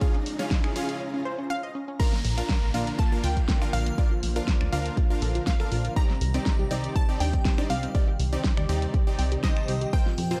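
This excerpt of uplifting, euphoric progressive house in Bb major at 121 BPM opens on a build-up, with a smooth, detuned analog pad holding sustained chords in the background under a filter sweep, while a riser and downlifter hum behind it and a twinkling granular texture adds a very quiet, sparkling shimmer on a high Bb in the first second. From the start, a gritty unison pluck with a 12-bit sampler edge spins arpeggios through delay, a punchy supersaw stab cuts in with sustained stab chords, and a punchy, layered electronic kick sits up front beside a pop drum kit of fat snare, warm hats, finger snaps, ride and crash. A brief break from 1.0 seconds lets a bright, lush unison pluck melody enter at 1.5 seconds, trailed by dub echo. The drop lands at 2.0 seconds on a Bb chord, where an airy, dreamy lead with vibrato and portamento adds a soft second line in the background, and a dark, funky plucky analog bass arrives just after, pushed up front. 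Sidechain pumping makes the pad, plucks, stab, lead and bass breathe with the kick, and the harmony moves from Db to Bb to Cmadd9, all wrapped in a digital ambience.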